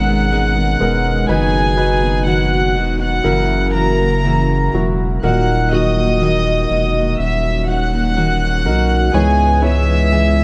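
A soft-edged string section carries the melody up front in this hopeful, tender pop ballad, its bowed sul tasto tone pure and floating with a smooth top as it reaches as high as F#6. Beneath it, a saturated sub bass sits close and heavy, deep and thick with a fast attack and long sustained notes. A concert grand piano supplies intimate, polished accompaniment with long sustain and audible action noise, while a fingerpicked jumbo steel-string guitar plays full-bodied arpeggios in the background. A mellow, round tonewheel organ holds dark, clean chords further back, colored by chorus vibrato and a slow rotary speaker. At 61 BPM in a straight 4/4, this excerpt moves from G#madd9 through B/F#, F#7 and D#m to C#m7 at 9.1 seconds, all under light studio reverb.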